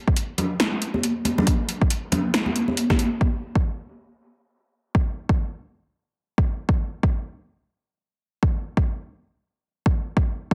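A half-time dubstep groove at 138 BPM in 4/4, swung on the sixteenths, drives this meditative, brooding cut from a longer piece, anchored by a deep, overdriven electronic kick that runs throughout. In the opening stretch a layered deep house kit adds a punchy snare and metallic, filtered hats, while bright, high-tuned congas with a thin skin and hard hands play through a dub echo. After the kit and congas drop away near 3.1 seconds, the kick carries on alone to the end at 10.5 seconds, with a heavily compressed, radio-like sound and a light reverb.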